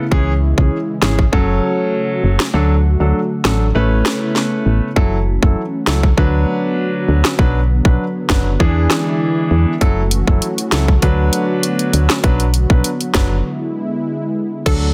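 Dense, heavily limited and bathed in digital ambience, this bouncy, tough dancehall cut pairs an intimate concert grand piano, its action noise audible, with a smooth, chorused analog pad pumping under sidechain, a punchy, round FM bass and an up-front electronic kit of tight kick, sharp snare, dark hats, rim click and crash; the kick drops out from 2.5 to 5.0 seconds, a break arrives at 13.4 seconds, and a hollow, detuned square-wave pluck flickers in at 14.7 seconds.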